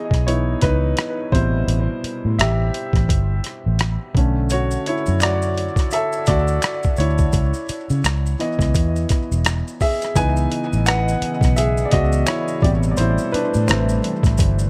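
The recording is dry and echo-heavy, with the piano, bass and drums all up front in a short cut from a longer piece. It is a smooth, sultry R&B and neo-soul groove at 85 BPM in 4/4, swung on the sixteenths and moving through minor ninth chords such as C#m9, Am9 and Bm9. A clear concert grand piano with a deep low end takes the solo throughout, its lines trailing off into dub echo, while a dark, round, foam-muted electric bass anchors the harmony. The boom bap drum kit is gritty, compressed and pitched down, with a thumpy kick, rim clicks and hi-hat. Maracas, group handclaps and finger snaps enter at 4.5 seconds, low in the mix and splashed with dub echo. At 10.1 seconds a hollow, flute-like pad with a chorus shimmer settles in the background, holding sustained chords.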